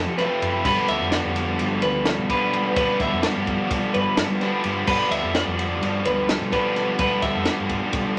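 A bright, twangy twelve-string electric guitar picks clean arpeggios over a double-tracked, overdriven stack guitar riff that sits up front, joined by a round, foam-muted fingered bass and, from 0.2 seconds, a dry cocktail drum kit with a punchy kick, high-tuned snare and dark cymbals, all driving a bright, wistful math rock and midwest emo passage in 9/8 at 255 BPM that moves from F to G7 in a moderate studio reverb.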